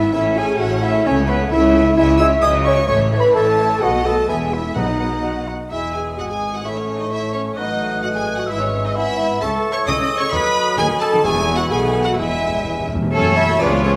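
Set in a moderately reverberant concert hall, this cheerful, lively classical-period movement for symphony orchestra moves quickly at 130 BPM in 2/4 in E major, and is cut from a longer piece. A clear, intense violin section carries the melody over second lines from a dark cor anglais, a mellow clarinet, a silvery flute and a softer background violin section. Rich violas and a warm bassoon fill in the accompaniment, a prominent, shadowy French horn section holds sustained chords, and rich, intense cellos and focused double basses anchor the bass. Timpani on calf heads first sound at 4.8 seconds and play a fill from 12.2 seconds, and a very quiet, loose trumpet section adds stabs from 13.1 seconds as the harmony turns to F sharp minor.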